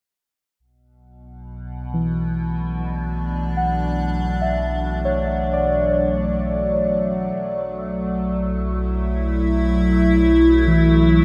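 Serene and melancholic, this slow ambient fragment in B minor at 71 BPM lets a deep, round sine sub bass enter at 0.6 s, an evolving, morphing wavetable pad carry sustained chords up front with chorus, phaser and its own reverb from 1.4 s, and muted, intimate felt-like synth keys add dark, decaying arpeggios through chorus and diffuse delay from 1.9 s, all three fading in under a huge, wet reverb as the harmony moves from Bm7 to F#m7/B at 7.4 s.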